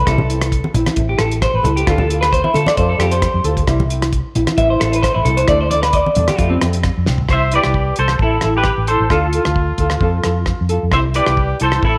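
A twangy, slightly broken-up electric guitar opens this joyful highlife groove at 133 BPM in C major, picking bright arpeggios with spring reverb and slapback echo over a round, foam-muted fingered bass, a fingerpicked nylon-string guitar, a cloth-damped drum kit with a fat snare and tight kick, and low-tuned congas in the background. That guitar falls away, and at 7.3 seconds, after a drum fill, a clean semi-hollow electric guitar carries the melody up front with ensemble chorus, joined by a clear trumpet with vibrato on a second line. The congas have dropped out by then, and a light small-room reverb surrounds the lightly swung progression of C, Am, Dm and F.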